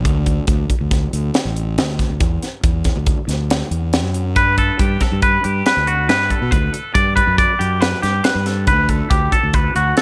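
A crisp fusion drum kit drives a straight 5/4 groove at 139 BPM, its high-tuned snare and punchy kick sitting up front alongside a growly, overdriven fuzz bass in this playful, bright math rock and midwest emo fragment in G major, cut from a longer piece. The harmony moves from D5 to Dadd9, and at 4.4 seconds, as it reaches Gmaj7, a clean, twangy electric guitar enters with picked arpeggios, colored by spring reverb and slapback echo. The drums sound airy and polished in a studio room, and light reverb gives the whole mix a touch of space.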